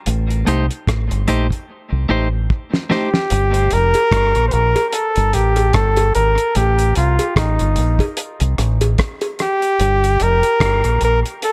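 A clear, up-front flugelhorn carries the melody from 2.9 seconds, its vibrato and scooped notes trailing tape echo across this deep, meditative dub reggae fragment, which swings gently and moves from Am7b5 to Gm. Beneath it, a round, punchy fingered electric bass sits dark and direct, while a cloth-damped drum kit thuds with a fat snare, tight kick, rim clicks and hi-hat under a rolled-off top, rolling into a fill at 1.7 seconds. A clean, compressed electric guitar picks a brief accompaniment through tape echo in the opening seconds, fading just after the horn arrives, and an echoing cowbell sits in the background of a small room with light reverb.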